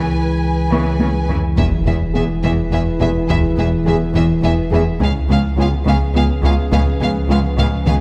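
A deep, ominous drone rumbles under this futuristic, relentless cinematic cue, a hybrid orchestral and electronic film score at 70 BPM in 6/8 that is cut from a longer piece. A sub bass with octave, a very quiet soft pluck arpeggio and lush bowed string sections (warm second-line violins and intense violas) open on C#m7, while distant cellos and a very quiet close taiko ensemble with hard sticks join at 0.7 seconds and drive a drum fill. At 1.6 seconds the harmony moves to E: rich, focused violins take the melody, double basses and a dark, detuned analog bass riff enter with a huge impact, and mellow French horns add sustained chords from 2.1 seconds before a C#7 colours the close, all set in a moderate scoring-stage reverb.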